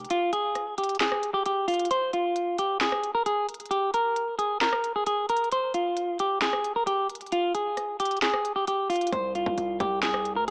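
This menacing, hard-hitting hip hop and trap excerpt at 133 BPM in a half-time 4/4 feel sets a clean, hollow-toned semi-hollow electric guitar melody up front through a low-pass filter over a crisp, produced trap kit of sharp snare, handclaps, rim clicks and hi-hats, with the hard-clipped kick and a saturated, heavy distorted 808-style bass with a noise layer dropping away after the opening instant and returning together at 9.1 s under a rootless Bb7sus2/C chord, all heard with light reverb and a small-speaker character.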